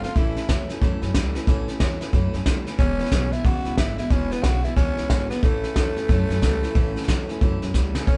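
A swung, bouncing rockabilly groove in 4/4 drives this upbeat, retro clip from a longer piece. A soft brush kit sits up front with a fat snare, a tight kick and hi-hat, and it closes with a fill at 7.7 seconds. Beneath it, pizzicato upright bass on gut strings gives a woody, thumpy pulse in the background, while a twangy, slightly broken-up electric guitar through a small old amp picks a low riff. A bright, full-bodied steel-string acoustic guitar fills in picked accompaniment, finger squeaks and all. A raspy, growling tenor saxophone, close-miked with vibrato, carries the melody: it sounds briefly at the start, drops out, and returns at 2.8 seconds to play through to the end. The band plays live together in a small room with moderate reverb, giving the mix a vintage cast.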